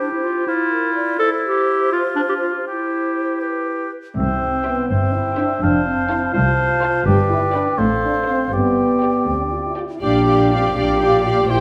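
A spirited, cheerful classical-period orchestral excerpt in a rubato 6/8 opens with clear, up-front clarinet alongside airy flute and mellow oboe, then at 4.2 seconds close-miked horns add sustained chords over veiled, con sordino cellos and double basses, a brief stroke of background timpani, and shortly after, at 4.6 seconds, dark, lush muted violas and violins, one violin line carrying the melody, all bathed in the reverberant glow of a scoring stage.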